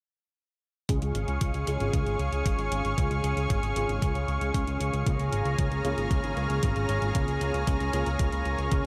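Italo disco with a melodramatic, nostalgic air, cut from a longer piece, where an overdriven, thumpy sampler-style kick and a gritty electronic hi-hat, both re-recorded in a small room, sit alongside a fat, detuned analog bass with a filter sweep and ring-modulated edge, while a lush, bright unison pad holds slow-blooming chords with chorus and vintage 12-bit sampler grit, and a vintage electric grand piano with a clangy low end punctuates with stabs through ensemble chorus, a low-pass filter and diffuse ambient delay, all shifting from Db to Bbm7 at 5.1 seconds inside a dreamy mix soaked in huge ambient reverb.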